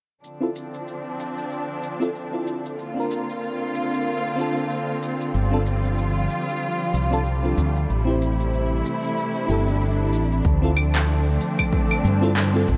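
A veiled, con sordino string section carries the sustained chords up front from the start, alongside a soft, round FM electric piano coloured by chorus, phaser, delay and a low-pass filter, and overdriven electronic shaker, claves and handclaps in a swung 4/4 groove. In this wistful, relaxed sunset chillout excerpt, a dark fretless bass with subtle chorus joins at 5.3 seconds, and a faint electronic swell in the background at 9.5 seconds leads into a punchy, overdriven kick that enters at 10.4 seconds. The dark production sits in a lush hall reverb, with the chords moving from Dm7 through Bbmaj9, G7sus4 and Am7 before returning to Dm7.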